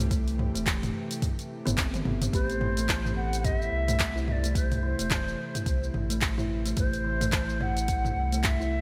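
A swung 108 BPM groove in 4/4 from a deep electronic kick and an up-front deep house kit of handclaps, hi-hat, shaker and toms drives this earthy, hypnotic organic downtempo excerpt in A dorian, with a brief drum fill at 1.9 seconds. Beneath it, a round sine sub bass with tube saturation and a tense, sawtooth-edged bowed-like drone in the background both carry sidechain pumping, while a woody, hollow kalimba rings out arpeggios through digital delay. At 2.3 seconds a distant, breathy ney enters with a delayed melody, joined in the background by a metallic bronze singing bowl with slow beating, and the mix sits in light reverb with bright 1980s-style digital production.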